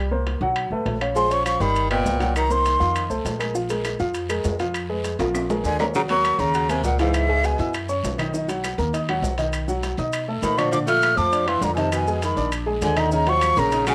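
A breathy, vibrato-laden concert flute carries the melody in phrases from 1.2 seconds, joined by a growling, gritty tenor saxophone, over a dark, intimate baby grand piano with audible action noise, woody pizzicato upright bass, ringing metal-shell timbales, and background claves, raspy guiro and grainy maracas, in this sultry, fiery Afro-Cuban jazz excerpt in Bb minor at 201 BPM, where a drum fill at 5.2 seconds leads into the second section, and the piano and saxophone carry a cassette-tape coloring within a homey cassette recording with moderate reverb.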